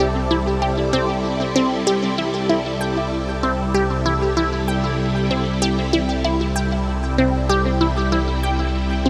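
Ambient, sequencer-driven space music in C major at 96 BPM in a straight 4/4, this short excerpt cut from a longer piece feels expansive and cosmic. A phased string machine holds sustained chords from C3 to D5 throughout, its swirling, vintage sawtooth tone shaped by a slow attack, long release, ensemble chorus and phaser. Up front, a resonant blip pluck carries a riff between C4 and G5, its juicy, squelchy character coming from a filter pluck with a moving notch, fast attack and short decay, treated with phaser and tape echo. Beneath them, a fat analog bass sits on C2 with a thick sawtooth tone and filter sweep. The excerpt runs 9.1 seconds over a single C6 chord, bathed in a huge, wet reverb with an 8.7-second tail and the grain of cassette tape.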